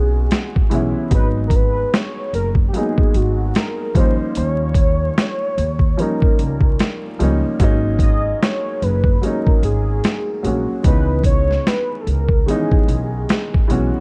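A dark, softly reverberant production with a bed of vinyl crackle sets a nostalgic, melancholic tone for this lo-fi hip hop fragment, cut from a longer piece. A boom bap sampler-style drum kit sits up front from 0.3 seconds. Its gritty, pitched-down, compressed, tape-warm hits come from a thumpy kick, a medium-tuned snare and hi-hat, all riding a swung sixteenth-note feel. Beneath it, an acoustic upright bass is plucked pizzicato in a low register with a woody, steel-string tone, while a worn, slightly detuned upright piano with short sustain carries the accompaniment. Above them, a velvety synth lead blending sawtooth and triangle waves, detuned, with a fast attack, sustained notes, chorus and vibrato, sings the melody until 13.6 seconds. The harmony moves from C#m9 through G#m7, D#9 and G#9sus4 before settling back on C#m9.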